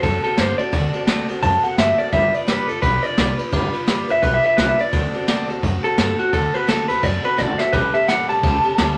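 A slightly broken-up, lo-fi electric guitar through a small old amp carries the melody as a solo across this rollicking, retro rockabilly excerpt at 171 BPM with a swung feel in D mixolydian, over a bright, boxy parlour acoustic guitar with finger squeak, a woody, thumpy pizzicato upright bass, and a roomy brushed drum kit that has dark cymbals and a boomy kick and plays a short fill at 7.4 seconds, as the chords move from D7 to G7 and back before landing on A7.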